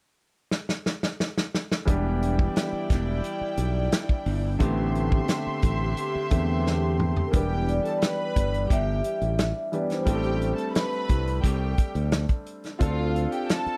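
Dry and silky, this cinematic excerpt of lush 1970s-style soul at 88 BPM opens with a roomy, tight-kicked drum kit playing a fill from 0.5 seconds before growly, bright fingered bass, a clear, long-sustaining baby grand piano and a reedy, gut-string studio string section with slapback echo enter at 1.9 seconds over Em7 and Am11, and a ringing, metallic vibraphone with fast motor vibrato carries the melody from 7.3 seconds as the harmony moves toward Dm7.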